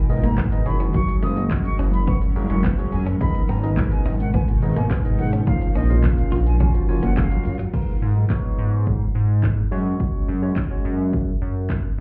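Dance-pop at 106 BPM in 4/4 with a straight feel, cut from a longer piece and set in G# dorian, it sounds bittersweet and driving. A punchy, tape-warm house kit of kick, snare, handclaps, hi-hat, shaker and crash sits up front beside a glossy, chorused synth bass with retro pulse-width character, while a barky tine electric piano plays accompaniment, the bass and electric piano both carrying sidechain pumping. Through the drop, which runs to 7.7 seconds, a cloudy granular pad with its own reverb, a crystalline wavetable pluck arpeggio, a bright direct-recorded guitar riff with subtle chorus, a grainy tube shaker and a distant, pure flute melody with digital delay fill out the texture, all heard muffled as if through a wall in a club, as chords move from G#madd9 through F#sus2, A#m7 and F#maj7.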